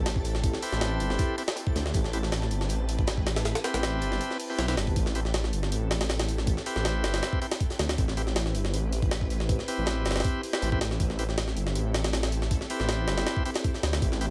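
A twinkling granular texture with an octave-up shimmer and built-in reverb sparkles in the background over silky string-machine chords on an Am7, while a thick, menacing detuned saw bass holds low sustained notes up front. This short cut from a longer drum and bass and jungle piece runs at 159 BPM in 4/4 with a straight feel in A minor, and its mood is dark and atmospheric. At 0.1 seconds two drum kits enter: a compressed, pitched-up sampler-style jungle kit sits up front with a thumpy kick, high-tuned snare and hi-hat, and a very quiet, saturated breakbeat kit with a rolled-off top adds snare and hi-hat beneath it. From 0.6 seconds a bright tonewheel organ plays shouting, lightly overdriven stabs with key click and dub echo, and the vintage, warbling string machine with ensemble chorus stays in the background throughout. The granular shimmer drops away at 5.0 seconds, leaving the bass, drums, organ and strings to carry the dry mix to the end.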